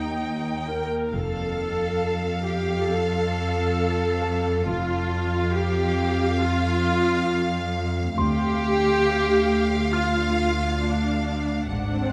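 An up-front, lush viola section carries the accompaniment in this ominous, eerie suspense film-score excerpt at 68 BPM, as a soft-attack violin section sings the high melody over close, vibrato-rich cellos, a tense, nasal drone with built-in reverb, a worn baby grand piano texture in the background, a double bass section entering at 1.1 seconds and a brief electronic swell at 11.9 seconds, set in a moderate scoring-stage reverb while the harmony moves from Eb through F to Dm.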